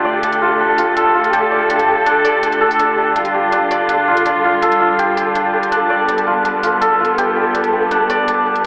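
Half-time drum and bass with a dark, heavy mood opens on a D minor chord, as a lush, bowed cello section sustains chords up front while a hammered santur rings out shimmering arpeggios through a low-pass filter and dub echo, a grainy, flickering texture with its own reverb hovers in the background, and a smooth electronic hi-hat enters at 0.2 seconds, all set in a wet hall reverb with a telephone-like tone.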